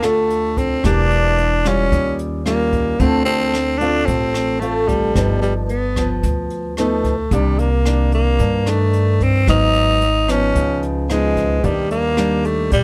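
Melancholic and smooth, this bossa nova excerpt in a straight 4/4 sets a raspy, growling tenor saxophone up front on the melody, while a dark, fingerpicked nylon-string guitar in classical style moves through shifting jazz chords. A woody, thumpy pizzicato upright bass anchors the low end, and a brushed drum kit with a boomy kick, hi-hat and rim clicks sits softly beneath. Close, detailed microphones and light reverb keep the sound intimate and clear across the 12.8 seconds.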